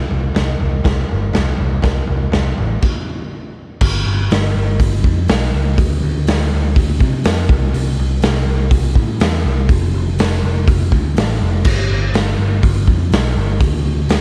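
Garage rock with a raw, swaggering mood in a straight four-four feel, cut from a longer piece, built on a growly, amped picked electric bass and a gritty, saturated acoustic drum kit of crash, hi-hat, kick, snare and toms. The drums sit up front with a punchy kick, a medium-tuned snare, a rolled-off top and the ring of a bright stone room, while the mix overall stays dry. After a brief opening passage, the band hits a stop from 2.8 to 3.8 seconds before launching into a new section that runs on to the end.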